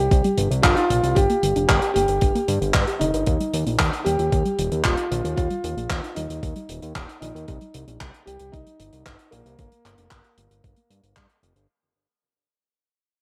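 A dark, mellow grand piano with audible action noise carries the melody over a fat, nasal, saturated analog bass and a warbly, lo-fi pluck that ripples arpeggios in the background through chorus, tape wobble and delay, while a dry 70s kit with gated-reverb handclaps and hi-hat joins a thumpy sampler-style kick to drive this playful, romantic italo disco fragment at 114 BPM through C5, Gm, Ebadd9 and Cm under a plate reverb, fading out across its full 11.7 seconds.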